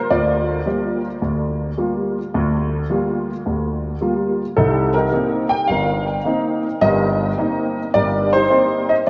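A grand piano plays alone through this moody, smoky solo jazz excerpt, its intimate, natural tone sitting up front with audible action noise and shaded by ensemble chorus and analog delay. At 107 BPM in 4/4 with a swung eighth-note feel, it spans G1 to G5 over Gm7, then Cm7 from 4.6 seconds, tuned to A4 = 445 Hz. A long plate reverb of 3.4 seconds and a cassette tape character give the 9.1-second mix a dreamy, drenched haze.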